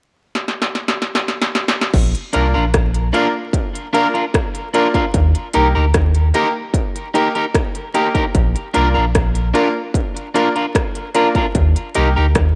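This roots reggae cut in Bb major moves at a laid-back 75 BPM with an uplifting mood, taken from a longer piece. An industrial drum kit opens with a fill at 0.3 seconds, its electronic, produced sound placed up front with a distorted kick, clanging snare, smooth hi-hat, rim click and crash cymbal. At 1.9 seconds a round, sine-like sub bass enters, deep and sustained with a fast attack, as the harmony settles into an alternation of Bb and Eb. From 2.3 seconds a picked electric guitar, slightly broken-up and colored by tape echo, carries the accompaniment, while a brilliant concert grand piano adds polished stabs with long sustain. Light reverb and a layer of vinyl crackle frame the mix.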